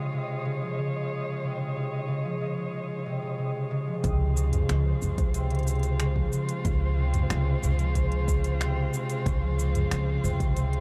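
Folktronica at 92 BPM in Db major, delicate and playful, opening on a Dbmaj7 with ringing, fingerpicked concert harp arpeggios carrying tape echo up front over a veiled, con sordino string quartet and a flickering, granular texture in the background, before a woody, growly pizzicato upright bass, a soft electronic kick and a crisp, tape-warm organic electronic kit of finger snaps, hi-hat, shaker and toms enter at 4.0 seconds, all in a dry, close 1970s-style sound with light reverb.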